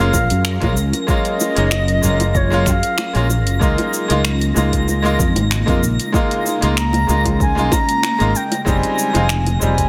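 Relaxed and sunny, this short sunset chillout excerpt moves at an easy pace with a light swing on the sixteenths. A wooden flute carries the melody with a pure, woody tone, vibrato and a crisp attack, while a brilliant grand piano plays intimate accompaniment with audible action noise and long sustain, both treated with digital delay. Beneath them, an up-front fretless electric bass sounds warm and direct, with tube saturation and ensemble chorus. An ethereal, airy pad holds mellow sustained chords in the background, and a twinkling granular texture adds sparkling, octave-up shimmer high above. From 0.1 seconds, a punchy electronic kick and a deep house kit of finger snaps, dark hi-hats and shaker join low-tuned acoustic bongos, all set in a lush hall reverb over chords moving from Gbmaj7 to Db6 and Fm7.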